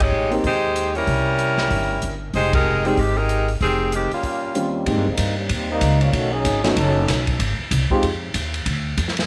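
A light reverb and small-room ambience frame this brassy, dramatic big band swing excerpt at 190 BPM, moving from F minor into Ab major at 4.9 s, cut from a longer piece. A bright, tight saxophone section with vibrato carries the up-front melody until 4.7 s over woody, thumpy pizzicato upright bass, a polished swinging drum kit with dark cymbals and a punchy kick, and a warm concert grand piano with deep bass that accompanies mostly from 2.8 s, with a band accent at 2.5 s. From 4.9 s a mellow, distant trombone section with light vibrato takes a solo as the second line over chords such as Abmaj9 and B9.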